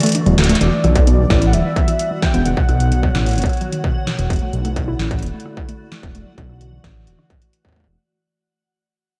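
A short break opens this melancholic, eerie IDM excerpt, with a velvety, chorused synth lead singing over a warbling, tape-like lo-fi pad, a dusty pluck arpeggio in the background and an electro analog drum machine of punchy snare, metallic hats, congas and rim clicks. A rumbling, detuned saw bass enters up front at 0.3 s, and after a fill at 0.4 s its filter sweeps alongside the pluck's, joined by a distorted kick at 1.0 s and a faint, reversed, granular swelling texture at 1.7 s, the whole mix steeped in dreamy hall reverb as it fades out.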